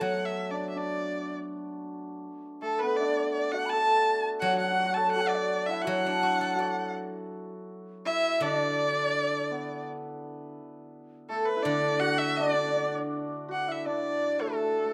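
A rich, bowed erhu sings the melody up front with vibrato and portamento, over a shimmering hammered dulcimer second line and a silvery steel-string zither played with fingerpicks, in this pastoral, graceful fragment of Chinese traditional chamber music in D gong mode at a rubato 82 BPM in 2/4. At 2.6 seconds an airy, reedy bamboo xiao enters in the background with a straight, tongued tone, adding a second line. The zither falls away at 13.9 seconds, and close, detailed microphones capture the ensemble in a moderate recital-hall reverb.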